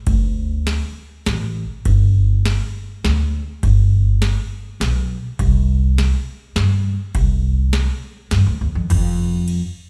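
Heard as a live gig through the venue's PA, the sound carries club reverb and lossy compression artefacts in this short cut from a longer klezmer piece in C harmonic minor. At 102 BPM in a straight 3/4, it feels festive yet bittersweet. From 0.1 s to 9.6 s, a woody, pizzicato upright bass with steel strings sits up front alongside a booming, overdriven analog drum machine, also up front, with a deep kick, crisp snare, and crash and ride cymbals.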